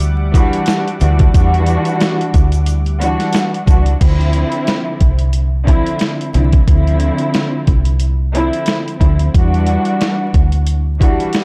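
A dark, warm production with a layer of vinyl crackle frames this gritty, tough boom-bap hip-hop excerpt, which moves with a swung sixteenth-note feel in 4/4. Up front, a sampler-style drum kit hits hard, compressed and pitched down, with a thumpy kick, a medium-tuned snare, hi-hat and crash cymbal. Beside it sits a deep dub fingered electric bass, round and punchy with a foam-muted, amped tone, holding to a low register. A close, woody studio string section carries the accompaniment throughout, its bowed ensemble sound lush and full of vibrato, treated with a cassette-tape character and filtering. For the opening 4.0 seconds, a smooth, full-bodied analog pad of detuned sawtooth chords with a slow attack and chorus hangs in the background, alongside a grainy, bright egg shaker. The harmony moves from Em9 to Dm9 as the second section begins at 4.0 seconds, then returns to Em9 at 9.3 seconds.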